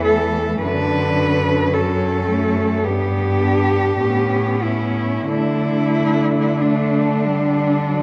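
Tender and serene, this slow classical fragment for four bowed cellos drifts at 45-55 BPM in a rubato 4/4, in D major, moving through D/F#, G and A9 before settling on D5. Up front, a rich, smooth cello sings the melody with vibrato over a clear, even bass cello, while a warm, expressive second line with portamento sits in the background and a focused accompanying cello sounds distant. The 8-second passage, cut from a longer piece, sits in a wet recital hall reverb and comes through worn, warbling cassette tape with pitch drift and lossy compression artefacts.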